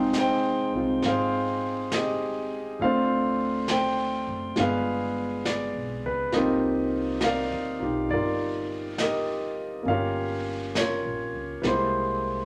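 This jazz ballad, cut from a longer piece, moves at an unhurried swung pace and carries a smoky, melancholic mood. A baby grand piano sits up front with a warm, natural tone and long sustain, voicing rich harmonies that move from Fm9 through G7b9 and Cm11 before closing on C7b13. An upright bass plays pizzicato beneath it, its steel strings giving a woody, thumpy sound that sits well below the piano in the mix. A brush drum kit enters at 0.1 seconds, with a medium-tuned snare and hi-hat adding brushed acoustic texture in a studio room. A large, wet studio reverb surrounds the trio, lending the brief passage a lingering, late-night atmosphere.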